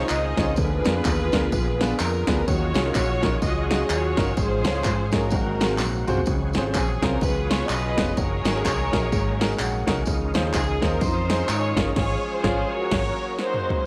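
Uplifting and reverent, this short excerpt of uptempo gospel swings at 126 BPM in Db major, with a rich, smooth studio string section up front carrying the melody over a shouting tonewheel organ in the background, its sustained chords colored by slow rotary speaker, light overdrive, chorus vibrato and key click. A bright, punchy fingered electric bass with an envelope filter and a dry analog drum machine drive the groove alongside vintage, band-limited handclaps and tambourine, while an intimate grand piano with audible action noise accompanies and adds a fill at 9.4 seconds. Drum fills mark 5.8 and 13.4 seconds, a band accent arrives at 12.0 seconds, and moderate echo chamber reverb surrounds the ensemble.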